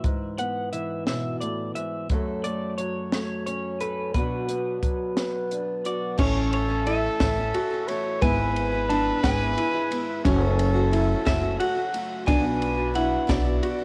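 A dry, lo-fi home cassette recording catches a hopeful, uplifting stretch of indie folk in a straight 6/8. An electric guitar through a small old amp carries the melody with a slightly broken-up tone, harmonic tremolo and tape echo, over an up-front fingerpicked acoustic archtop guitar and a compact cocktail drum kit with a punchy kick and high-tuned snare. At 6.2 s the arrangement builds: a bright picked archtop takes over from the fingerpicked one, a woody pizzicato upright bass sits up front, a warm upright piano plays arpeggios through tape echo, a very quiet, polished upright piano adds accompaniment with audible action noise, and a dark trumpet with light vibrato takes a smooth second line.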